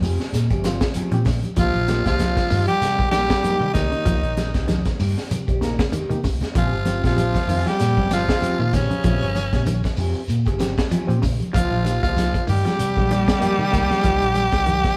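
This intense, hypnotic afrobeat excerpt opens with a crunchy, saturated breakbeat kit up front, a round hollow-body bass, soft-handed congas, a grainy shekere, quiet, slightly broken-up guitar stabs and a punchy, close-miked trombone carrying a second line. At 0.6 s a reedy electric piano with fast tremolo and a clean, dark semi-hollow guitar playing arpeggios join in the background, and at 1.6 s a raspy tenor saxophone with vibrato takes the melody up front. A drum fill lands at 5.3 s over the swung sixteenth-note feel, and the band plays live together in a stone room with moderate reverb.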